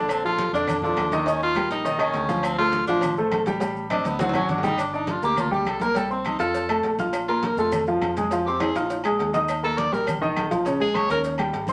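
A bright, present tenor saxophone takes an up-front jazz solo across this short cut from a longer Afro-Cuban jazz piece, its sultry, fiery line running in straight 4/4 over a harmony that moves from Bbmaj7 and Eb9 through Dm7 and Am7b5 before settling toward Gm, F and Eb. Beside it, a concert grand piano sits just as far forward, warm and polished with a deep bass and short sustain, carrying the accompaniment from the opening moment to the end. A fingered electric bass, heard direct and amped, holds the low end further back. The percussion section is layered: ringing metal-shell agogo bells and timbales in a small room, thick-skinned, damped congas, tight high-tuned cowbell and hard-handed bongos, woody claves and grainy maracas in a live room, most of them compressed and saturated in the background. Drum fills arrive at 3.9 and 8.6 seconds, while a wet studio reverb wraps the sound.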